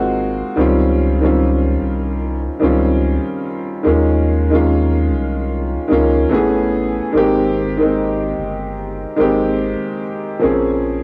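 An upright piano and a round analog bass open together at 0.0 s in this reflective, melancholic lo-fi hip hop fragment, set at 73 BPM in 4/4 with a 63% swing on the sixteenths and tuned to A4 = 439 Hz. The piano carries the accompaniment between Eb3 and Ab4, its woody, smooth, vintage tone sitting up front with long sustain and a cassette tape colouring. Beneath it, the bass moves between G1 and Eb2, deep and dark with a sine-like roundness, a fast attack and sustained notes, thickened by tube saturation and mixed lower than the piano. The harmony drifts through lush extended chords, from Ab13 into Dbmaj9#11 and Eb9sus4, then a striking Amaj9 at 6.3 s that settles onto Abmaj9 before ending on Bbm9. Light studio reverb and the homespun feel of a cassette recording give the whole passage a hazy, intimate character.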